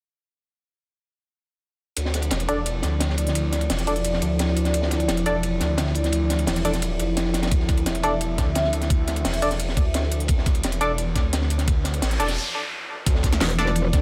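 Over a straight 4/4 pulse, two drum kits enter together at 2.0 seconds: a crunchy, gritty breakbeat kit with a high-tuned snare, dark cymbals and a rolled-off top, layered with a crisp electronic drum and bass kit built around a cracking snare. This excerpt of dark technical drum and bass feels aggressive and brooding. A swirling, phased saw bass arrives at the same moment, thick and overdriven, pumping against the beat. A deep, moody analog pad holds sustained chords on a minor chord with an added ninth, and a nasal, band-passed chord stab with chorus and delay cuts through brightly under a filter sweep. A knocking, up-front electronic kick joins at 7.5 seconds, and an electronic noise sweep leads into a short break before a metallic, wobbling FM bass takes over at 13.4 seconds. Light reverb and digital ambience round out the mix.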